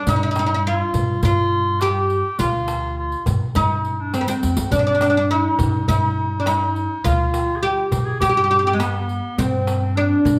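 A wet, large studio reverb surrounds this live-in-one-room ensemble performance, a short cut from a longer Turkish makam piece in G makam hicaz, tuned to A4 = 436 Hz. The mood is warm and passionate, moving at 103 BPM in a straight 4/4. Up front, a plectrum-plucked fretless oud carries the melody with a deep, woody double-string tone. Behind it, a classical-style clarinet adds a second line that sounds distant and roomy. An acoustic upright bass plays pizzicato on steel strings with a thumpy low end. A crisp metal-shell darbuka played with soft hands and a quieter riq with bright jingles provide the percussion, and a drum fill lands at 4.1 seconds.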